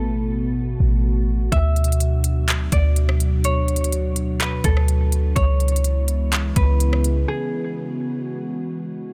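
A digital ambience surrounds this dreamy, floating excerpt of atmospheric cloud-rap, set at 125 BPM in 4/4 with a half-time feel and centred in D lydian. A warbly, nostalgic tape-like pad holds sustained chords throughout, its detuned sawtooth and triangle tones softened by chorus, built-in reverb and sidechain pumping, moving from Asus2 to Dmaj7 at 1.5 seconds and on to C#m7. Above it, a mellow concert harp carries the melody with ringing, fingerpicked notes, filtered dark and trailed by tape echo. A clean, boomy 808-style bass sits up front with sine-like depth and a fast, decaying attack, while a trap kit of hard-clipped kick, crisp hi-hats, handclaps and rim clicks enters at 1.5 seconds. The drums drop out at 7.2 seconds and the bass at 7.3, leaving harp and pad to float through a brief break until the clip ends.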